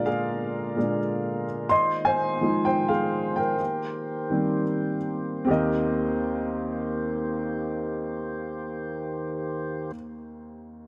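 Warm and uplifting, this piano-driven pop excerpt in Eb major moves at a straight 127 BPM in 4/4, with an intimate, woody upright piano whose boxy tone, audible action noise and long sustain sit up front as it takes a solo through the first 5.5 seconds, while a clear, clean tonewheel organ holds sustained chords through a slow rotary speaker until 9.9 seconds, the pair bathed in a moderate plate reverb over a progression from Bb7 to Fm7 to Eb6.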